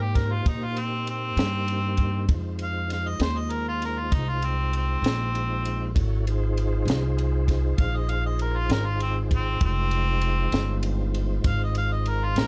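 Mournful and smoky, this slow blues in 12/8 is cut from a longer piece and carried by a mellow harmonica solo with light vibrato and scooped notes, its vintage, gently overdriven tone sitting up front over Cm7 and Fm7 chords. A clear tonewheel organ holds sustained chords through a slow rotary speaker and chorus vibrato, with a touch of key click, while a woody, thumpy pizzicato upright bass on gut strings anchors the low end. A compact cocktail drum kit joins at 0.2 seconds with a tight kick, high-tuned snare and ride cymbal, its dark, rolled-off top suiting the close, nearly dry room.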